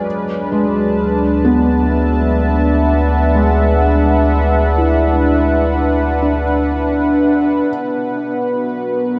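A smooth, detuned analog pad sits up front across the whole 9.2 seconds, holding sustained chords with a slow attack, a long release, a sub-octave weight and a gentle chorus shimmer. This is a melancholic yet serene ambient fragment, drifting at 63 BPM in straight 4/4 and tuned to A4 = 438 Hz. Alongside the pad, a felt-muted upright piano traces soft, intimate arpeggios with a thick-felt mellowness, its notes trailing into tape echo. A round, deep bass built from square and sine tones holds a dark D up front in the mix until it drops out at 7.6 seconds. The harmony rests on D before shifting to B5 at 7.7 seconds, where the piece moves into a brief new passage. Everything is bathed in a wet cathedral reverb with a six-second tail and carries the hazy character of cassette tape.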